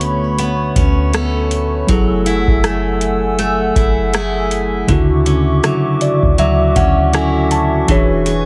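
Longing and late-night in feel, this contemporary R&B excerpt moves at a relaxed 80 BPM in F# minor with a swung sixteenth-note lilt, drifting through Bm9/D, F#m9, Dmaj9 and E13 chords. A mellow tine electric piano carries the accompaniment and steps forward with a fill from 5.6 to 7.9 seconds, while a picked steel-string acoustic guitar plays arpeggios through delay and a hollow, flute-like pad holds sustained chords with chorus and sidechain pumping. Underneath sit a clean, dark 808-style bass and a dry, booming analog drum machine with deep kick, metallic hi-hat and rim click, set in a lightly reverberant space.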